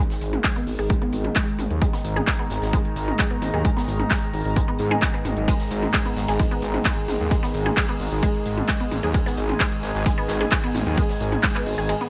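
This driving, peak-time techno excerpt at 131 BPM in a straight 4/4 opens at once on a thick, menacing detuned saw bass, its beating low notes sitting up front, beside a juicy, squelchy resonant blip pluck that plays a riff in the background through phaser, overdrive, subtle chorus and dub echo. An electronic kick drum arrives at 0.4 seconds, punchy and up front, and stays until it drops out at 11.9 seconds. A techno drum kit with smooth hats adds handclaps, ride cymbal and toms up front, while an acoustic open jazz drum kit with a high-tuned snare plays hi-hat and snare in the background, its hats pumping with the sidechain. Underneath, an evolving analog drone with chorus and a deep, moody ambient pad with chorus and built-in reverb fill out the harmony around G#, both breathing with sidechain pumping. The mood is relentless and industrial, and the mix is dry, with little reverb overall.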